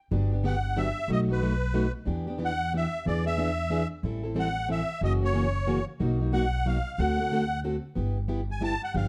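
Guitar and upright bass open together at 0.1 seconds, setting up a swinging, charming acoustic string swing in the jazz manouche style, moving at a brisk 183 BPM in 3/4 with a lilting swung feel in G major. The picked steel-string acoustic guitar carries the accompaniment with a warm, parlour-sized tone, while the pizzicato upright bass sits up front, woody and growly with a thumpy bottom end. At 0.5 seconds the musette accordion enters with the melody, its reedy, shimmering voice coloured by the wet musette tuning. The harmony travels through a colourful chain of seventh chords before settling on G6, where the accordion takes a brief solo from 8.0 seconds as the passage moves into a new section. The production is dark with a light touch of reverb, keeping all three players close and intimate in this short cut from a longer piece.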